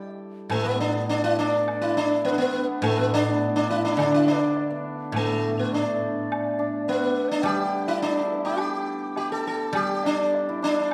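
A dark, warm production set in a reverberant recital hall frames this short piece cut from a longer Chinese traditional chamber work, pastoral and festive at 104 BPM in 2/4, with a rubato feel in the G gong mode. From the start, a buzzing, up-front sitar with shimmering sympathetic strings carries the melody beside a ringing hammered dulcimer on a second line, while a silvery guzheng, played with fingerpicks, lays a low accompaniment underneath. At 0.5 seconds an airy, close-miked bamboo xiao adds a bright, straight-toned second line, and a dry woodblock ticks in the background, with the music shifting into a new section at 9.8 seconds.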